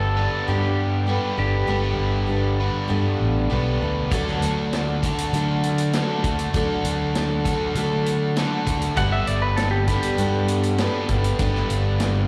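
A straight 4/4 pulse at 99 BPM carries this short cut from a longer folk rock and heartland rock piece, its nostalgic yet hopeful mood captured as a live gig heard through the venue's PA, with recital hall reverb around it. A fingered electric bass sits dark, round and up front from the start, beside an overdriven, double-tracked electric guitar riff that is compressed and pushed forward. A picked steel-string acoustic guitar plays accompaniment with bright fresh strings, audible finger squeak and a slapback echo. A clean pedal steel guitar, played with fingerpicks and slide and carrying volume swells and slapback echo, adds a warm second line in two brief phrases, the second arriving at 9.0 seconds. The vintage drum kit joins at 4.1 seconds with hi-hat, a tight kick and a medium-tuned snare, its small-room sound mid-forward with a rolled-off top, as the chords move from Gadd9 to D and back to Gadd9.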